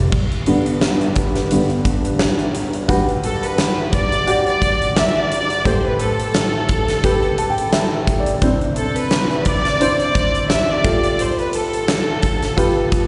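A lightly swung 87 BPM groove in 4/4 and G major drives this anthemic, hopeful piano-driven pop excerpt, where a woody, boxy upright piano with slapback echo opens with a solo passage over a punchy, fat-snared arena drum kit with bright cymbals and a soft, breathy pad with chorus and phaser that stops at 2.9 seconds, before a lush, smooth violin section with vibrato, slapback echo and digital delay carries the melody from 3.3 seconds and the piano adds a fill at 7.0 seconds, the whole mix captured live through a venue PA with moderate club reverb and a dulled top end.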